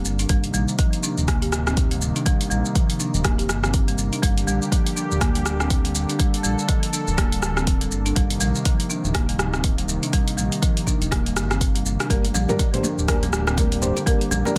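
A detuned, warbling analog pad and a smooth, dark synth bass with gliding portamento open this spiritual, driving afro house excerpt at 122 BPM in 4/4, both breathing with sidechain pumping over a 16th-note swing. A deep house kit of hi-hat, rim click, shaker and toms joins almost at once, followed by a deep, tape-touched electronic kick that sits forward in the mix, both carrying the small-room character of a re-recording. Woody folk marimba arpeggios played with soft mallets weave through the middle register, their round, rustic tone shaded by a low-pass filter and tape echo. The harmony moves from Cm7 to Gm and back, resting on Gm from 12.1 seconds, where felt-muted upright piano stabs enter with audible action noise, short sustain and their own tape echo. Very quiet, high-tuned congas struck with hard hands ring in at 12.2 seconds, and a digital ambience surrounds the whole groove.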